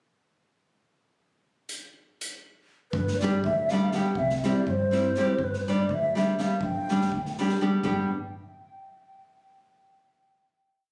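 A breathy, mellow low ney carries this short, wild Balkan wedding-band piece in 5/8, its tongued, vibrato-laden motif melody sitting up front with a touch of tape echo from 2.9 seconds, joined by woody pizzicato upright bass on roots and fifths. A small fingerpicked nylon-string guitar enters at 3.2 seconds with off-beat triads, after an airy street-band drum kit with a boomy kick has opened the pickup at 1.7 seconds. Light reverb and compression shape the phone-in-the-room recording as it moves from G to C and back before a final chord.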